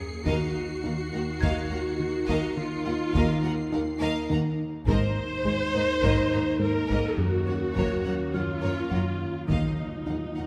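An uneasy, tense suspense film cue in Eb dorian at a slow 52 BPM opens on an up-front viola section with soft-attack portamento, mellow French horn chords, a punchy, filter-plucked analog bass riff, a nasal bowed-like drone with its own reverb, a clear high violin texture that stops at 4.3 s, and a bell-like celesta. Lush violin sections soon carry a focused melody and an expressive second line over distant cello and very quiet double bass sections and heavy-stick taiko drums, as the harmony moves from Ebmadd9 through Abadd9 and Gb back to Ebmadd9. Hard-mallet timpani add a fill from 9.5 s, and a wet scoring-stage reverb gives the orchestra a spacious sound.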